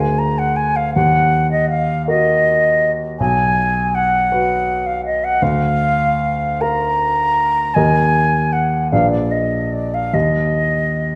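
Romantic classical duo in a solemn, elegiac mood, where an airy, straight-toned concert flute sings the melody in a rubato 6/8 over a polished baby grand piano accompaniment, both bathed in the lush reverberation of a recital hall across this 11.2-second fragment of a longer piece.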